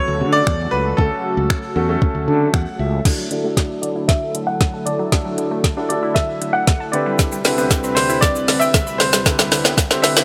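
A brilliant grand piano carries the melody over a deep, long-sustaining concert grand and a warbling, detuned analog pad with chorus, both pumping under sidechain, in this carefree, summery dance-pop excerpt at 116 BPM in D major, as a direct fretless electric bass plays only until 3.0 s, a soft-kicked electronic R&B kit with woody snare and metallic hats arrives at 0.5 s, and a round, mallet-like FM synth pluck with tape echo adds background arpeggios from 3.1 s through a build-up and filter sweep, joined late by a faint, grainy tube shaker.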